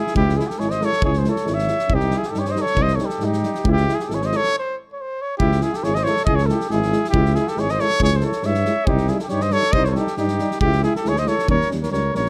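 Balkan brass band folk in C# Hungarian minor at 138 BPM in a straight 2/4, virtuosic and restless, with a mellow trumpet carrying the melody up front over a distant, roomy flugelhorn second line, a vintage French horn and smooth-topped euphonium in the background, a soft-attack tuba bass and a loose acoustic kit with a fat snare and tight kick, all breaking into a stop from 4.5 to 5.4 seconds before the theme returns over chords moving between C#m and Cm and ending on D#7 in a dry room.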